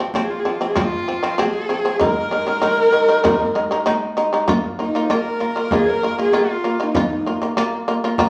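Solemn and windswept, this short cut from a longer Mongolian folk piece sets a clear, biting horsehead fiddle melody with vibrato and portamento up front over buzzing, plectrum-plucked shamisen arpeggios and a close, dry frame drum, while an airy, hollow bamboo xiao traces a second line in the background, the band sounding live in one room with a wet studio reverb.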